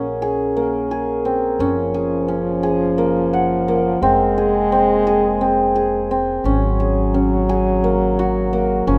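Close, detailed microphones and a light reverb give this short cut from a longer piece an intimate, finely resolved sound. It is contemporary chamber music in an uneven 7/8 metre with a straight feel, and its mood is playful and hopeful. A hammered dulcimer sits up front from the start, spinning shimmering, ringing arpeggios across its range. Beneath it, a pizzicato upright bass with steel strings supplies a woody, growly, thumpy low line. At 1.6 seconds a mellow French horn enters as a second voice, also up front, playing a compact line in classical style with light vibrato. The harmony moves from Bbm7 through Gbmaj9 and Fm to an Ab7sus4, and all three instruments carry on to the close at 9.0 seconds.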